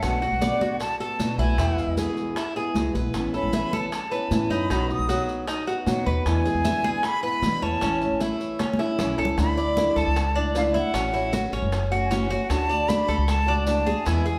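An airy, bright concert flute carries the melody from the first moment, its soft attack and expressive vibrato sitting close over a sunny Cuban son and guajira groove in A major at 154 BPM. Beneath it, a fingerpicked flamenco guitar with fresh strings adds warm accompaniment, while a Cuban tres picks metallic arpeggios on its double strings, some of them octave-doubled. A woody pizzicato upright bass sits up front with steel strings, anchoring the harmony through changes such as Bm7, E and Aadd9. High-tuned congas with thin, damped skins and tight, vintage-sounding bongos played with hard hands stay in the background, joined by grainy, saturated maracas. A drum fill at 8.6 seconds leads into a new section at 9.4 seconds, where the chords shift to Dmadd9, A6 and D, and the whole band, playing live together in one room, sits in a generous large-studio reverb before this cut from a longer piece ends at 14.4 seconds.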